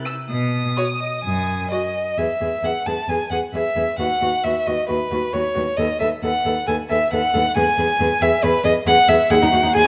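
A close, up-front violin carries the second line from 0.8 s with smooth, even bowing and vibrato, while a distant violin sits in the background with the melody from 0.1 s. This quick, urgent and restless classical-period movement for string quartet in E major moves at 134 BPM in 4/4 with a rubato feel. A distant viola gives the accompaniment a soft attack and expressive portamento, a clear, focused cello holds the bass from 0.3 s, and a moderate recital hall reverb surrounds this passage cut from a longer piece.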